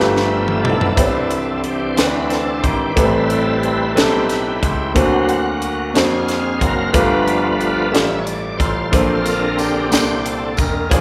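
A drum fill on a tight, up-front funk kit with a high-tuned snare opens this slow gospel passage in a straight 6/8. At the same moment, a full, shouting tonewheel organ takes the lead for the whole stretch, lightly overdriven and up front, with key click, chorus vibrato and a slowly turning rotary speaker. Beneath it, a warm grand piano with short sustain plays the accompaniment while a second, clear and intimate grand piano carries the bass line, its action noise audible. The harmony moves through rich ninth chords and an altered dominant, giving the music a jubilant, hopeful lift. A jingly tambourine sits distant in the background from 9.3 to 10.9 seconds, and a wet concert-hall reverb lends the fragment a churchlike spaciousness.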